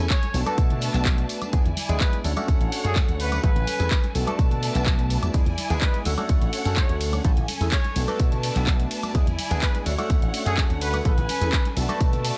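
A punchy, up-front electronic kick drives this sunny, joyful filtered disco house excerpt at 126 BPM alongside a house kit of handclaps, warm hi-hats, ride cymbal, tambourine and woodblock, background tambourine and congas, a bright, amped slap bass through an envelope filter and tube saturation, a barky tine electric piano with phaser, lush bowed violin chords, and a clear trumpet section carrying the melody with digital delay over a looping Bm7–E7–Dmaj7–Amaj7 progression, with sidechain pumping on most parts and little reverb in a dry mix.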